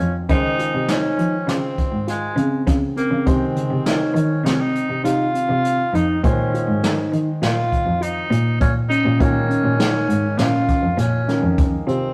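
In an uneven, driving 5/4 at 101 BPM, this intricate progressive instrumental excerpt in Bb minor sets a clear, vintage-toned tenor saxophone melody with scooped notes up front over a dark, bowed cello bass full of vibrato and portamento, mellow tine electric piano arpeggios, a bright concert grand comping in the background, and a boomy, roomy brush drum kit on hi-hat, kick and snare, all in a moderate stone-room reverb with a rough rehearsal-room sound as the chords move from Dbmaj7 to Fm7/C to Bbm7.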